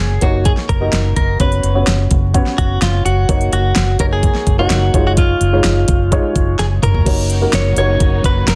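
A dark, mellow upright piano and a clean, direct-recorded electric guitar open this hopeful, uplifting piano-driven pop excerpt in F# major at 127 BPM, with the guitar carrying the picked, compressed melody over the piano's woody, short-sustain chords. A vintage fingered electric bass anchors everything on a low F#1, its foam-muted tone round and punchy. The pop drum kit enters at 0.2 seconds, up front and produced, with a knocking kick, fat snare and crisp hats, and a drum fill at 6.6 seconds leads into the next section. At 7.1 seconds a dark studio string section arrives in the background with lush, bowed sustained chords and expressive vibrato. The harmony moves between F#6, Bsus2/F# and C#add9/F# over the steady F# bass, all set in light digital reverb within a dense, heavily limited modern master.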